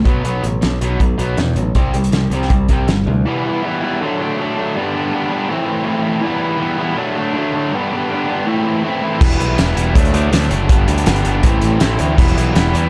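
A driving straight 4/4 at 161 BPM propels this upbeat, jangly indie rock excerpt in D mixolydian, where a bright, overdriven, double-tracked stack guitar riffs throughout over Em, D, G and Am changes, joined up front by a growly picked electric bass and a loose acoustic drum kit with a pumping room sound, a fat snare, punchy kick and dark cymbals, which drop out after a fill at 3.1 seconds and return at 9.2 seconds, all set in a small room with a dark, warm production.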